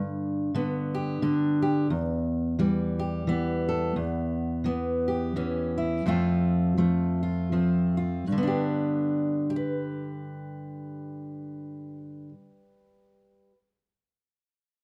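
A fingerpicked steel-string acoustic guitar plays alone and up front, its dark, woody voice carrying the worn character of old strings through a pastoral, nostalgic folk passage in a swung 3/4 lilt. The harmony moves from G through Em, Em6 and F before settling back on G at 8.3 seconds, with the pace slowing from 4.0 to 8.3 seconds. A light reverb surrounds the guitar in this short passage cut from a longer piece.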